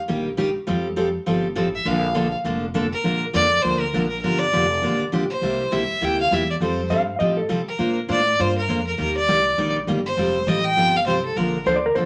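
A swung 4/4 feel drives this cheerful, down-home western swing country excerpt, where a full-bodied picked dreadnought acoustic guitar and a woody, thumpy pizzicato upright bass carry the accompaniment from the start, a clear, focused bowed fiddle with light vibrato takes the up-front melody from 1.8 s, and a dark, clean electric lap steel adds brief slide phrases with volume swells from 6.9 s, all set in a wet studio reverb.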